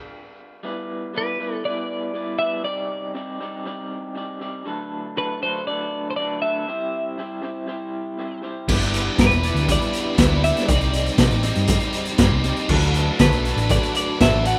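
A bright, twangy twelve-string electric guitar carries a wistful, carefree indie rock melody with warbly pitch drift and plate reverb from 1.2 seconds, over a lo-fi, slightly broken-up riff on an electric guitar through a small old amp with tremolo that starts at 0.6 seconds, until at 8.7 seconds a biting overdriven guitar riff with ensemble chorus, a dark, round hollow-body short-scale bass, a gritty, saturated garage drum kit with a boomy kick and very quiet shimmering string-machine violins all join in this rough home demo excerpt.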